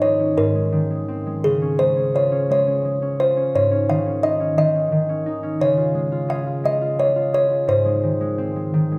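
A delicate, tinkling music box carries the melody up front in this innocent, tender children's lullaby, its mellow tone sounding soft and boxy. Beneath it, a thumb-plucked concert harp rings out with a warm, acoustic accompaniment in a loose, rubato 6/8. The short excerpt sits in a moderate scoring-stage reverb with a faint mains hum, moving through Abadd9, Db, Absus4 and back to Db before settling on Ab near 7.7 seconds.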